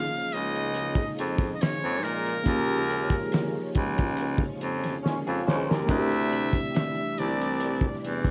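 A muted trumpet opens this short neo-soul R&B excerpt, its buzzy, breathy lead full of scooped notes, set over a slightly out-of-tune tine electric piano and a shimmering, slow-attack string machine that carries an ensemble chorus. At 0.3 seconds a clear baritone saxophone takes the bass line with vintage vibrato, and a cloth-damped drum kit arrives up front with a fat snare, tight kick, hi-hat and handclaps, all muffled and gritty with a rolled-off top. The mood is introspective and sultry, with a straight, unhurried feel. A band accent spans 2.5 to 5.9 seconds, and from 5.0 seconds a drum fill arrives alongside nasal, straight-muted trombone section stabs, while a dark, slightly broken-up electric guitar adds a brief second line. The harmony moves from Eb9sus4 to D9sus4 at 5.9 seconds, and the whole recording sits in light reverb and small-room ambience on worn, warbly cassette tape with drifting pitch.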